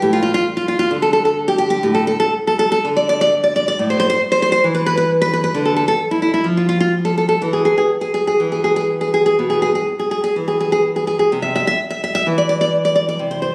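This is a romantic piece for solo classical guitar, a brief passage cut from a longer work, with a wistful, melancholic mood. It moves at a slow 56-69 BPM in 4/4 with a rubato feel, tuned to A4 = 439 Hz. The nylon-string guitar plays alone for the full 13.5 seconds, fingerpicked across a range from A2 to E5. Its tone is bright and full-bodied with a deep classical character, sitting up front with audible finger squeak. The harmony moves from D5/A through A5, Dm and E5, settling on Cadd9 at 11.3 seconds. The sound carries a moderate recital hall reverb with a 1.7-second decay, captured on a phone in the room.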